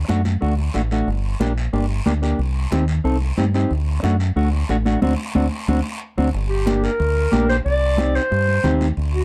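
A driving straight 4/4 cumbia pulse at 182 BPM comes from damped, high-tuned congas sitting in the background and a raspy, saturated guiro, over a round, dark fingered dub bass that sits up front in G harmonic minor. A clean, fingered electric guitar supplies accompaniment through a D, Gm, Cm, D7 progression, and the band hits an accent from 5.0 to 6.3 seconds. At 6.5 seconds a mellow, roomy clarinet enters with a passionate classical-style solo melody, all in a dark production with light reverb, cut from a longer piece.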